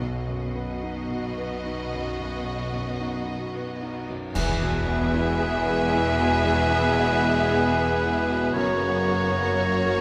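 Opening on lush, vibrato-rich violins carrying the melody over a second violin line, a clear grand piano, distant violas, a very quiet ringing harp playing arpeggios, focused cellos and rich bowed double basses, with a cymbal swell, clash cymbals and concert bass drum adding bright percussion until 6.4 seconds, this hopeful, uplifting cinematic orchestral score unfolds at a rubato 57 BPM, and at 4.3 seconds a band accent marks the arrival of a warm solo oboe and a dark, very quiet French horn section in sustained chords, joined just after by a pure silver flute on a second line, within a moderate scoring-stage reverb.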